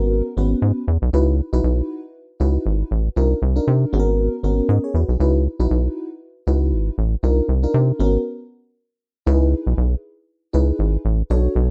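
A rough home-demo sound with moderate studio reverb frames this late-night, danceable early-eighties boogie funk cut in C# minor at 118 BPM with a light 16th-note swing, where a rubbery, hollow square bass sits up front beneath a lush, dreamy FM electric piano with a soft pad layer, shimmering with chorus and tremolo, moving through G#m11, C#m11 and Cm11 before a stop at 8.3 s and a turn to C#m9 at 9.3 s.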